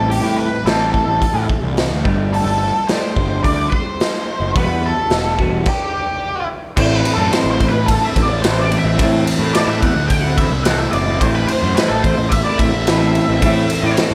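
A straight 4/4 pulse at 108 BPM drives this hypnotic, mysterious psychedelic rock excerpt in A dorian, where a raw garage drum kit with a punchy kick, gritty saturation and a pumping room sound sits up front, a round, overdriven fuzz bass holds the low end, a clean, hollow-bodied semi-hollow guitar plays a double-tracked phaser riff over Am7, Gsus2 and Emadd9, and a dark octave-fuzz lead guitar soaked in wah, distortion and slapback echo carries the melody from the start, then after a stop from 5.7 to 6.8 seconds takes a solo through to the end in light small-room reverb.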